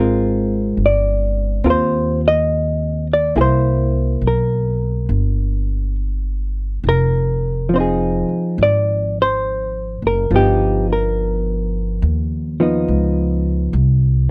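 A dark, clean hollow-body electric guitar, fingered and compressed, accompanies this wistful, smoky jazz ballad at 70 BPM with a lilting swing over a progression that moves from Ab69 through C7 and Fm7 to G7alt. A woody, growly pizzicato upright bass sits up front beside it, carrying on alone after the guitar stops at 13.7 seconds until this fragment of a longer piece cuts off at 14.3 seconds. The dry, close sound has the intimate feel of a 1970s studio session.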